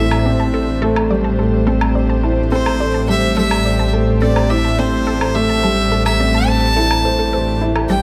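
A soft, felt-muted upright piano with audible action noise carries a riff through tape echo in this moving, hypnotic piano and strings electronica excerpt at 106 BPM in A minor, resting on a single Am7 chord. Up front, a clear, biting solo violin sings the melody with an airy, nasal bow and its own tape echo, while a deep, rumbling detuned saw bass anchors the low end. Distant, floating studio strings hold sustained chords in the background alongside a round, chorused analog pluck playing arpeggios, with an overdriven, layered woodblock keeping time from 0.1 to 7.9 seconds, all set in a moderate echo chamber reverb.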